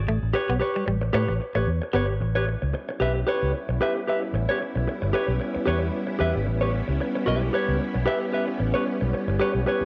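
A lightly swung 16th-note funk groove at 113 BPM struts through this short cut from a longer piece, with a round, punchy foam-muted bass up front, a brief hollow-body guitar riff with warbly pitch drift ending by 2.0 seconds, a compressed, clean guitar accompaniment with spring reverb, and a silky string machine with ensemble chorus settling in on sustained chords from 2.6 seconds over an A9 harmony, all carrying the character of a home cassette recording in a lightly reverberant room.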